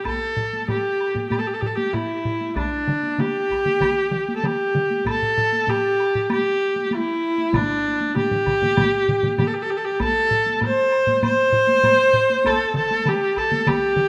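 Ceremonial and driving, this short cut from a longer Japanese traditional taiko ensemble piece moves in a straight 4/4 at about 97 BPM, gradually speeding up throughout. A single bowed viola carries the melody up front from the start, its tone clear and focused with vibrato, ranging from D4 to C5 yet sounding slightly distant. Beneath it, a taiko ensemble struck with hard sticks sits in the background of a live room, joined by a woody woodblock, while a solo taiko part hit with hard sticks comes through compressed and saturated from 0.4 seconds until 12.3 seconds. Another taiko ensemble enters at 2.9 seconds and stays to the end; one of the ensembles plays with hard sticks in a small room, and a further group played with heavy sticks adds weight in the background of a live room. A moderate, lush hall reverb surrounds the whole, though the mix keeps a rough home-demo character.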